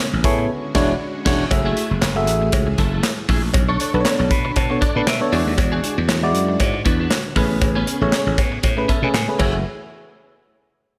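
A growly, punchy slap bass sits up front in this funky, danceable early-eighties boogie funk cut from a longer piece, alongside a polished, airy studio drum kit of kick, medium-tuned snare, hi-hat, handclaps and crash cymbal. The band hits an accent together from 0.5 to 1.5 seconds, and a cowbell with a metallic ring and slapback echo joins in the background at 1.5 seconds. A glassy FM electric piano with a bell-like attack and warbling chorus carries the accompaniment and breaks into fills starting at 4.1 seconds. A clean, compressed electric guitar picks a riff through ensemble chorus and slapback echo, while a very quiet string machine of sawtooth violins holds shimmering, soft-attack chords beneath. The chords move through rich extended harmonies such as F#m9, Bm9, E9 and Amaj9, and a lush hall reverb gives the whole mix a big arena sound.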